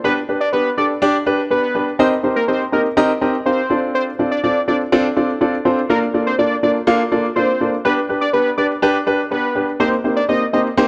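A straight, even 4/4 pulse carries this short pop fragment, cut from a longer piece, with a summery, carefree mood. A grand piano with a short sustain sits up front as accompaniment, spanning Bb3 to F5 for the full 10.9 seconds. Over it, a fat, vintage analog lead sings the melody between Bb4 and Eb5, its detuned sawtooth and square wave tones reinforced by a sub octave, with fast-attack, sustained notes, vibrato, a filter sweep, a warbling chorus and delay, before it stops at 10.6 seconds. The harmony moves through G, Cm7, F6 and Bbmaj7, then returns to G and Cm7. A lush hall reverb and a dark, warm production surround the pair.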